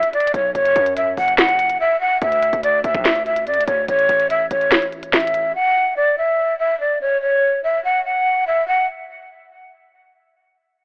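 Trap-leaning hip hop excerpt at 144 BPM in a half-time feel, dreamy and triumphant, where a breathy, vibrato-laden jazz flute carries the melody up front through 8.9 seconds over a knocking, crisp trap kit with finger snaps and a punchy, heavy 808 bass that both drop out near 5.5 seconds, all framed by light reverb and a dry, gritty, telephone-like saturated sound.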